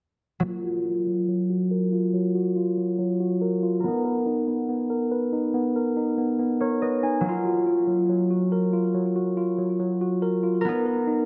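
A half-time hip hop groove carries this triumphant yet dreamy fragment from a longer piece, where a mellow, up-front tine electric piano plays arpeggios through low-pass filtering and delay over ringing, fingerpicked concert harp accompaniment, both bathed in lush hall reverb as a filter sweep runs throughout, the harmony moves between F#maj7 and Bmaj7, and a harp fill arrives at 6.4 seconds.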